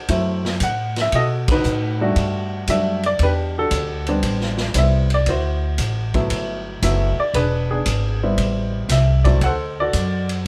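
An intimate baby grand piano carries the melody up front, its short sustain and audible action noise giving a close, natural feel as it moves through F#m7b5, B7, Em11, Am7, D9, Gmaj13 and E7 changes in this short section of a sophisticated jazz trio swinging at 116 BPM. A woody, growly pizzicato upright bass sits just as close, while a distant, roomy drum kit with hi-hat, ride cymbal, a medium-tuned snare and a boomy kick swings behind them. The band hits an accent together at 1.4 seconds, and light reverb lends the recording a warm glow.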